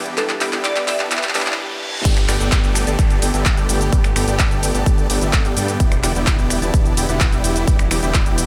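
Euphoric and triumphant, this festival progressive house excerpt at 128 BPM in G major opens with a build-up: a glassy, crystalline wavetable pluck carries the melody over a softly placed baby grand piano, very quiet bowed strings with vibrato, a huge, bright supersaw riff and a big-room drum kit whose fill runs beneath a swelling reverse cymbal before a brief stop at 1.6 seconds. A thick, saturated detuned saw bass and a punchy, up-front electronic kick arrive at 2.0 seconds, and the drop lands at 2.1 seconds, where the pumping supersaw, shaker, handclaps, finger snaps, hi-hat, ride and crash push on over Gadd9 and Em7 harmony. Faint risers and downlifters pass through, while tape echo trails the pluck, piano and supersaw.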